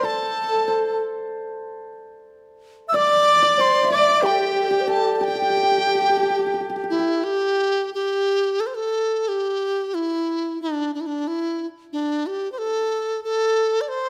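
Set in a moderate stage reverb, this pastoral, graceful excerpt of Chinese traditional chamber music moves with a free, rubato feel as a reedy, buzzing large dizi leads up front with vibrato and a crisp, chiffy attack, joined by a husky, focused horsehead fiddle with portamento and a hollow, breathy low xiao in the background until 7.2 seconds, while a shimmering, ringing hammered dulcimer lingers to 10.1 seconds and leaves the dizi alone to close at 14.1 seconds.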